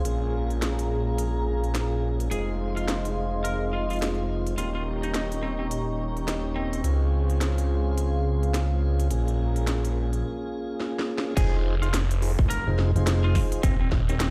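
Glitch hop in F minor at 106 BPM, with a 16th-note swing that gives this gritty, swaggering clip its strut. A thick, swirling detuned saw bass sits up front with phaser and tube saturation, while a mellow tonewheel organ drops dub-echoed stabs through a slow rotary speaker. Both the organ and a deep, moody analog pad breathe with sidechain pumping, and a very quiet, warbling tape-like pad adds nostalgic lo-fi colour until the pads fall away at 10.2 seconds. A lightly driven lead guitar, dark and slightly broken-up, carries the melody with dub echo, and the drum and bass kit brings a cracking snare, crisp hats and crashes. After a brief break and drum fill, the drop lands at 11.4 seconds with an overdriven, punchy electronic kick, and a round, amped fingered electric bass briefly joins on a low F. The harmony cycles through Bbm7, Fm7, Eb7 and Dbmaj7, and the mix carries the stony reverb of a bare room played through a big sound system.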